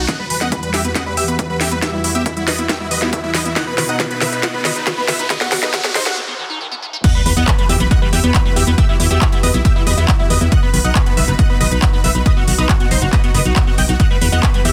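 Soaring and bittersweet, this uplifting trance passage, cut from a longer piece, opens on a build-up where a huge, euphoric supersaw lead carries the melody over a lush, thick unison pad and a squelchy, resonant acid bass arpeggio with a filter sweep. A plucky unison lead adds a catchy second line in the background, while a drum fill runs through the build-up and a riser and noise sweep lead into a brief break at 6.2 seconds, and the drop lands at 7.0 seconds with an impact and sub drop. A round, mellow FM bass then sits up front beside the punchy electronic kick and the techno kit of crash cymbal, handclaps, smooth hats and a cracking, softly clipped snare that have played since the opening, all under sidechain pumping on the leads, pad and basses, with tape echo on the leads and acid bass and a dense, heavily limited master.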